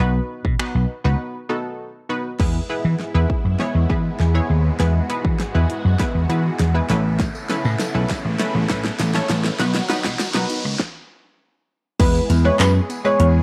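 Summery and carefree, this dance-pop excerpt moves at 100 BPM in a straight 4/4 in E major, cut from a longer piece. Punchy, bright sawtooth chord stabs with a sub octave and chorus pump against a round, amped vintage slap bass from the start, and the electronic pop drum kit, with its fat snare, bright hats, handclaps, finger snaps and crash, sits up front beside the bass. At 2.4 seconds a build-up begins over a filter sweep, drum fill and chords moving from E to Aadd9 and B, as huge, lush supersaw chords with a phaser settle into the background and a very quiet, crystalline wavetable pluck adds arpeggios, joined later by a background riser and a faint, jingly tambourine. After a stop, the drop lands at 12.0 seconds on E, where a smooth, dark, expressive synth lead with vibrato, chorus and slapback echo carries a short melody. Digital ambience with a high-pass filter gives the mix a polished, airy space.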